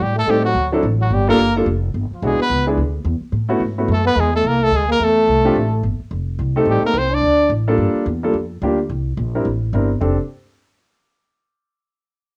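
A punchy trumpet carries the melody from the opening moment, joined by a clear, close-miked trombone on a second line and a woody, thumpy pizzicato upright bass, with a baby grand piano entering a fraction later. It is swinging, relaxed small-group jazz in the swing and bop vein, moving briskly at 216 BPM in 4/4 and F major. The trumpet is forceful and present with a light vibrato, while the trombone brings a soft attack, vibrato and scooped notes. The horns drop out at 7.5 seconds, leaving the dark, up-front bass and the natural-toned piano to carry on through Gm9 and C9 toward a closing F69, and both stop at 10.2 seconds. A wet studio reverb and the character of a home cassette recording give this short cut from a longer piece a homespun intimacy.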